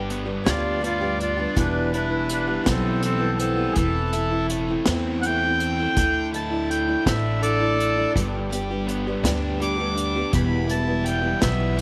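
Folk rock and heartland rock in a warm, jangly 6/8 at 55 BPM in G major, where a reedy, boxy accordion with slapback echo takes a solo melody from 0.4 seconds over bright, picked steel-string acoustic guitar with finger squeak, a dark, double-tracked overdriven electric guitar riff, growly pizzicato upright bass and an airy, polished drum kit with a high-tuned snare, punchy kick and bundle sticks, set in a light reverb.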